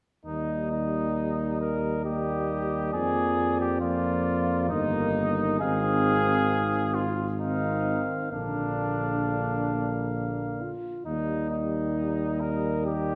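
Classical brass quintet music in a stately three-beat metre, triumphant and warm in mood, taken from a longer piece. A mellow, vintage-toned trumpet carries the melody above a clear flugelhorn second line with light vibrato. A soft-attacked French horn and a distant, roomy euphonium with gentle vibrato fill in the accompaniment from the background, while an up-front tuba anchors the bass, and the harmony moves from Eb through Bb/F and Fm7/Ab to arrive back on Eb at 11.1 seconds, the quintet set in a lush concert hall reverb.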